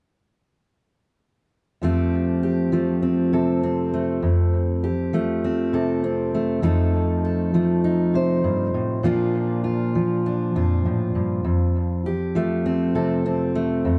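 A fingerpicked steel-string acoustic guitar enters at 1.8 seconds and carries this short folk excerpt alone, cut from a longer piece. The mood is hopeful and anthemic, moving at 100 BPM in a straight 4/4 feel in F mixolydian. The guitar sounds warm, full-bodied and up front, with the character of a jumbo body, ranging from F2 to C5 over a progression of Fadd9, F7 and Bb before returning to Fadd9 at 11.5 seconds. A dub echo on the guitar gives the echo-heavy mix its character alongside a light reverb. The top end is rolled off, with nothing above 10.8 kHz, and the passage ends at 14.0 seconds.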